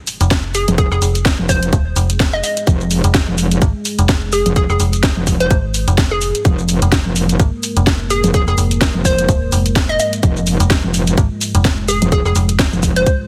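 Heavily compressed with a radio-like digital ambience, this bouncy, swaggering bass house excerpt in F minor runs at 127 BPM with a swung 16th feel, as an overdriven tight kick and a garage kit of hi-hat, shaker and cracking snare drive alongside a metallic, saturated wobble bass and a mellow FM bass, both pumping up front, while a hollow, detuned square pluck with lush chorus and dub echo carries the melody over a dark sawtooth pad in the background, and a barely audible electronic impact sounds at 0.1 seconds.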